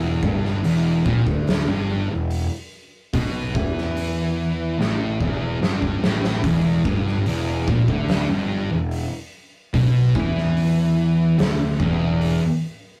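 A rough rehearsal-room recording with light reverb and a saturated glow frames this sludgy, heavy stretch of stoner and doom metal, cut from a longer piece and moving at a slow 73 BPM in E minor. Two thick fuzz guitars play the riff from the start, one with a warm distorted tone and the other a darker one, both picked in the low register. Beneath them, a fuzz picked electric bass adds a bright, growly, overdriven edge. An oversized low-tuned drum kit enters at 0.2 seconds and sits up front, with a punchy kick, a fat snare and hi-hat, its gritty sound carrying a stone-room ring. A drum fill between 4.8 and 6.4 seconds leads into a repeat of the opening passage, which stays on E minor to the end.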